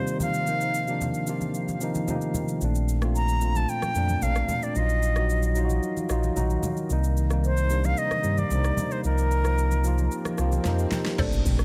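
A full, up-front sine sub bass with an octave anchors this relaxed, soulful amapiano cut from 2.6 seconds, moving under a chord cycle from F9sus4/C through Bbmaj9, Ebmadd9/Bb and Cm7 at 112 BPM in straight 4/4. An airy silver concert flute with vibrato and delay carries the melody over a clean tine electric piano that adds a short fill, while a very quiet, moody sawtooth pad sustains beneath, and a tape-warm deep house kit with a deep kick, fat snare and metallic hats is joined by ringing congas played with soft hands in the background. Near the end a faint electronic swell and impact arrive, and at 11.2 seconds a hollow, bouncy square pluck with chorus and a round, percussive log drum bass enter briefly.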